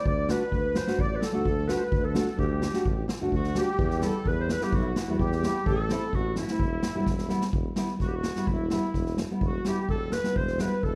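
A straight four-beat klezmer groove, festive yet soulful, rides on a street-band drum kit with a boomy kick and medium-tuned snare up front and a close-miked tuba bass with vibrato, while a thumb-plucked nylon-string guitar adds fresh-stringed accompaniment and a reedy, sweet accordion with light tremolo tuning carries a second line beneath the mellow, distant clarinet melody, until a drum fill at 7.1 seconds opens a clarinet solo from 7.5 seconds, set in a dark mix with moderate recital-hall reverb in this fragment cut from a longer piece.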